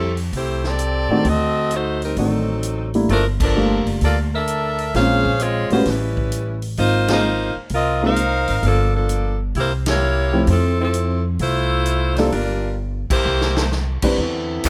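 Swinging at 130 BPM in F major, this brassy, joyful big band jazz passage, cut from a longer piece, puts a bright, loose saxophone section with vibrato on the melody over woody pizzicato upright bass, a distant, roomy drum kit with a boomy kick and an intimate baby grand piano accompanying with audible action noise, all punctuated by band accents and a drum fill at 12.8 seconds before a clear, smooth-topped saxophone section enters on sustained chords at 14.2 seconds under light reverb.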